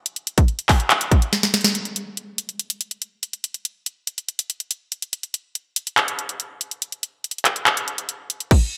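Dark and brooding, this short hip hop fragment, cut from a longer piece, rides a half-time feel in 4/4. The only part is an electronic trap drum kit, entering at 0.1 seconds and sitting up front in the mix with kick drum, snare drum, hi-hat, handclaps and crash cymbal. Its kick is hard-clipped, the snare cracks with a sharp edge, the hi-hats sound warm, and the whole kit has a tape-warm character. A brief drum fill at 1.3 seconds leads into the longer main stretch, and the hi-hats fall silent at 8.5 seconds. A moderate plate reverb and a bright, 1980s-style digital production give the kit a glossy sheen around its dark mood.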